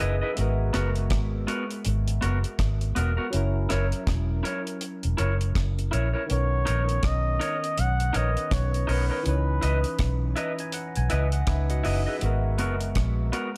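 A breathy, whispered flugelhorn carries the melody from 6.3 to 10.3 seconds, its mellow tone touched with light vibrato and tape echo, in this tender, romantic lovers rock reggae excerpt cut from a longer piece. Underneath, a dark, round, foam-muted bass sits up front with a deep, dry reggae kit built on hi-hat, tight kick and rim click, while a twangy, slightly broken-up guitar through a small old amp adds stabs bathed in spring reverb. A barky tine electric piano with phaser and dub echo plays accompaniment throughout and takes a fill from 10.0 to 12.2 seconds, all in a small room ambience over a swung 4/4 groove moving through ninth and seventh chords.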